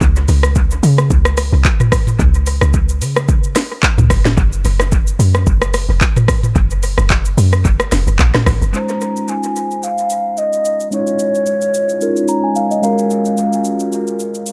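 This relaxed amapiano excerpt opens on a drop where a deep, round, noise-tinged log drum bass with a fast, percussive attack and dark decay sits up front beside a produced electronic drum kit of kick, sharp snare, metallic hats, handclaps, rim clicks, shaker and toms, its hits trailing dub echo in a dry, echo-heavy mix, until at 8.7 seconds the bass stops and a mellow, clean tine electric piano, colored by phaser, low-pass filter and dub echo, settles onto a Dbmaj7 while a breathy, hollow, close-miked concert flute with a straight tone and soft attack carries a filtered, echoing melody, the piano adding a fill from 12.0 seconds, shortly before the harmony moves to Gbmaj9 at 12.8 seconds and the flute falls silent.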